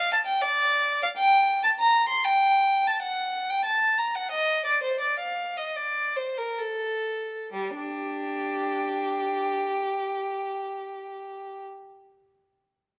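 Grave yet flowing, this baroque-style suite movement for unaccompanied violin unfolds in G minor in 3/4 time, its tempo moving freely between 62 and 100 BPM with a rubato feel. A single bowed violin carries the whole line, ranging from G3 up to C6 with a rich, smooth tone and steady vibrato. The pace slows from 2.1 to 7.5 seconds, closing the opening section before a second section begins. The violin plays until 11.6 seconds, and the passage is cut from a longer piece. Close, detailed microphones keep the instrument up front, with light reverb adding a touch of space around it.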